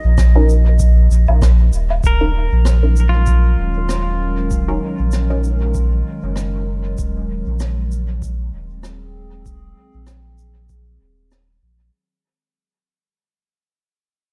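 A distant, pure silver flute with vibrato and dub echo opens this deep, spacious ambient dub excerpt in Eb dorian at 97 BPM. It sits over a round, up-front sine sub bass with tube saturation, soon joined by a very quiet, overdriven electronic kick, a lightly swung brushed rim click, shaker and woodblock with dub echo, muted, nasal filtered chord stabs with phaser and echo, and a warbling, nostalgic lo-fi pad with chorus and reverb. From 2.1 to 4.6 seconds a clean electric pedal steel guitar adds slide arpeggios with volume swells, while the harmony shifts from Ebm to Ebm7 and the piece fades out from 2.0 seconds.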